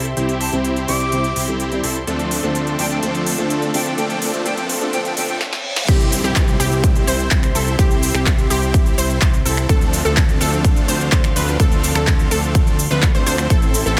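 A punchy, up-front electronic kick drives the drop from 5.9 seconds in this uplifting, euphoric slice of festival progressive house at 126 BPM, landing under huge, detuned supersaw chords that pump against the sidechain through cassette tape colour, a low-pass filter and dub echo, while a fat analog bass and a big-room dance kit with crisp hats, punchy snare, handclaps, finger snaps, shaker and crash keep the 4/4 straight throughout. The opening build-up over C and Dm7 carries a filter sweep, a soft felt-muted upright piano and a breathy jazz flute with chiff and 12-bit sampler grit set back in the mix, alongside a reedy, gut-string studio string section, before a reverse cymbal and drum fill tip into the drop. Very quiet risers and downlifters drift through light digital ambience from 3.3 to 9.7 seconds, and in the drop a bright unison pluck spins arpeggios with dub echo.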